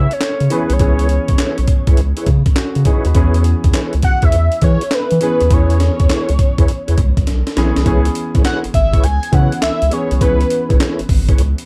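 This dark, dry recording is a short cut from a longer new jack swing R&B piece, slick and punchy, with a swung 16th-note feel in 4/4. Up front, a gritty, compressed breakbeat sampler-style kit hits hard with a thumpy kick, a high-tuned snare, handclaps and hi-hat, its small-room character adding grit. A round, deep analog bass with a fast attack and sustained notes sits level with the drums, while a polished, present grand piano with short sustain plays accompaniment in the middle register. Soft, flute-like tonewheel organ stabs shimmer through chorus vibrato and a slow rotary speaker. On top, a fat, detuned sawtooth lead with a sub octave, a moving notch and vibrato carries the melody through tape echo until 10.8 seconds, after a drum fill at 7.3 seconds ushers in a new section at 7.9 seconds.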